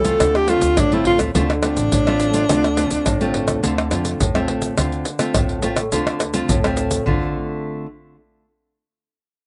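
This lively, nostalgic samba and choro fragment moves at 105 BPM in a straight 4/4, set in D minor with a Dm7 colouring the opening. A breathy alto saxophone carries the melody up front in a close-miked, jazz-style solo with vibrato, its tone touched by a slapback echo. Beneath it, a fingerpicked nylon-string guitar offers deep classical accompaniment, also up front and also carrying slapback echo. Pizzicato upright bass with gut strings sounds woody and thumpy, while tube shaker, pandeiro, tamborim and a deep surdo are played with soft hands, close and dry. The saxophone drops out at 4.2 seconds and the bass at 7.3 seconds, leaving the guitar to carry on alone until 7.9 seconds. The recording was made outdoors with little reverb, and everything above 10.8 kHz is absent.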